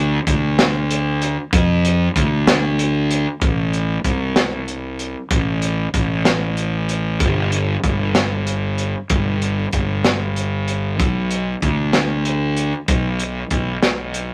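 A fuzzy, overdriven fingered electric bass opens this cut from a longer math rock and midwest emo piece, with a crisp, acoustic fusion drum kit joining at 0.3 seconds: hi-hat, a punchy kick and a high-tuned snare in a small, pumping room. Both parts sit up front in a restless, intricate 6/8 with a straight feel, and the music moves into a new section at 3.4 seconds that carries on until the end at 14.3 seconds. Light reverb and a layer of vinyl crackle frame the sound.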